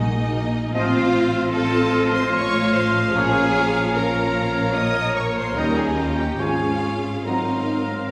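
Tender and lyrical, this brief classical excerpt moves at 74 BPM in a rubato 3/4, with a lush bowed violin section carrying the melody in the background while a second violin line, airy flute, distant clarinet and a warm solo oboe weave second lines above smooth violas, a very quiet mellow bassoon, a rich double bass section and an expressive, close cello section with portamento. From 0.7 s to 7.6 s, very quiet dark French horns and clear, vintage trombones hold sustained chords as a dark, roomy trumpet section adds stabs, over a harmony that passes through Bbm and Eb7 to settle on Ab13. The ensemble is heard from further back in a wet scoring-stage reverb.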